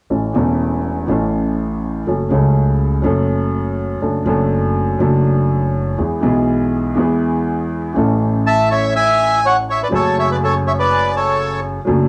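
Tango in A major at 123 BPM in 4/4 with a rubato feel, elegant and passionate, cut from a longer piece and heard as a home cassette recording in moderate studio ambience. A boxy, up-front upright piano with long sustain and tape colour carries the accompaniment over a woody pizzicato upright bass on steel strings, moving through A, F#m, D/F# and E. At 8.5 seconds a reedy, dark bandoneon, also up front and tape-coloured, takes the melody until 11.6 seconds.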